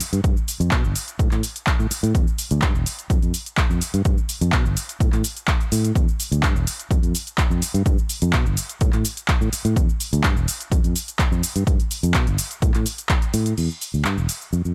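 A fingered electric bass sits up front in this filtered disco house excerpt, its direct, amped tone running from 0.0 to 14.7 seconds through a low-pass filter and sidechain pumping, with a filter sweep on it over the closing stretch from 13.6 seconds. The groove moves at 126 BPM in a straight 4/4, tuned slightly low to A4 = 439 Hz, and carries a nostalgic, groovy mood. A punchy analog drum machine with a tape-warm character supplies crash cymbal, handclaps, hi-hat and shaker, its hats, cymbals and percussion pumping against the sidechain. An electronic kick drum, analog and up front, plays from 0.2 to 13.2 seconds and is the loudest of the parts. The sound is dry, with little reverb, keeping every listed part close and immediate.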